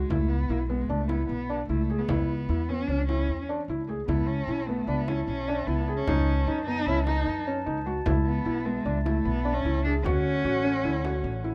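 A bowed cello sings an expressive, vibrato-laden melody with portamento over woody, dark pizzicato upright bass from the very start, joined at once by soft arpeggios on a felt-muted upright piano and a deep frame drum in the background, before a mellow, distant woodwind section enters at 4.1 seconds with sustained chords, giving this restless, pensive fragment of contemporary chamber music in an uneven 5/4 metre a close, intimate and dry sound.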